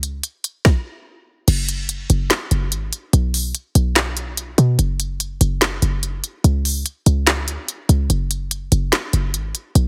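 A punchy 808-style bass and an electronic trap drum kit both start at once in this menacing, melancholic hip hop excerpt, moving with a half-time feel. The bass sits up front, a tight sine tone with a noise layer on top, its fast attack decaying and reaching down to F#1. The drums are equally forward and produced, with a hard-clipped kick, a woody snare, crisp hi-hats, handclaps and a crash cymbal. At 1.5 seconds the arrangement moves into a new section that carries through to the end of the cut. The sound is dry and squashed by heavy multiband compression, giving it a dense, radio-like character.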